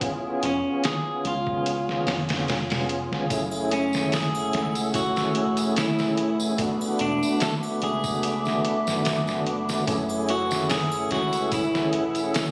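A lightly overdriven tonewheel organ with key click and a stopped rotary speaker opens this cinematic, smoky trip hop excerpt alongside a muffled, pitched-down sampler-style drum kit with a thumpy kick and medium-tuned snare sitting up front, the whole cut carrying a light 16th-note swing. A dark, round fingered electric bass slips in almost at once, and a clean, picked electric guitar carries the melody through a dub echo. At 3.3 seconds a warbling, nostalgic pad arrives, detuned and lo-fi with chorus and 12-bit grit, together with acoustic tambourine, triangle, tube shaker and group handclaps from a small room. A very quiet, breathy wind-like noise layer settles in at 4.7 seconds as the chords move from a tense dominant through F#m7 and E7sus4 back to F#m7. Heard as if captured on a phone in the room, the recording is wrapped in light reverb and vinyl crackle.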